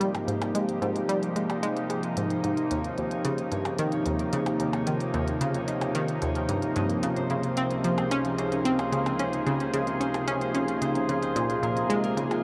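Bathed in a huge, wet ambient reverb with an 8.7-second tail, this luminous, expansive piece of sequencer-driven space music moves at 111 BPM in Ab major, cut from a longer work. Up front, an evolving wavetable pad morphs and warbles through full-bodied sustained chords (Ab6, Eb7, Dbmaj7, then Bbm7 at 11.4 seconds) with chorus and shimmer reverb, joined by a round, detuned analog pluck whose sawtooth-and-square riff carries a filter sweep, chorus and analog delay. Behind them a ringing, fingerpicked concert harp fades in across the whole passage with delayed arpeggios, while clicky, overdriven electronic hi-hat and percussion blips tick through delay.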